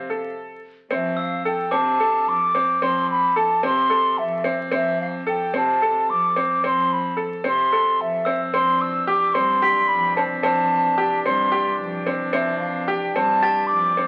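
A bright, airy baroque flute with a crisp attack leads this hopeful, shimmering piece of contemporary chamber music in 7/8 at 220 BPM in F lydian, carried over brilliant, intimate concert grand piano arpeggios with audible action noise and a soft, distant bowed cello bass. A dry, bell-like glockenspiel played with soft plastic mallets rings in the background at moments, first at 1.2 seconds; a mellow brass ensemble adds sustained chords from 8.5 seconds as the harmony moves from Fmaj7 to Cadd9/F, and everything plays in a moderate room. The sound has the crackle of a very old 78 rpm record, and the passage, cut from a longer piece, has a brief stop near the start.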